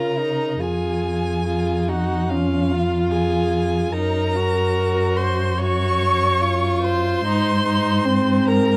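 A dark, lightly reverberant recording presents a short cut from a slow, romantic string quartet movement in Db major, at 73 BPM in 4/4 with a serene, lyrical rubato feel. The first violin sings the high melody with a rich, even bowed tone, the second violin adds a warm second line with a smooth top, and the viola supplies focused accompaniment, each player using vibrato. Up front, the cello carries the bass with soft attacks, vibrato and expressive portamento as the harmony moves from Db to Ab at 7.2 seconds.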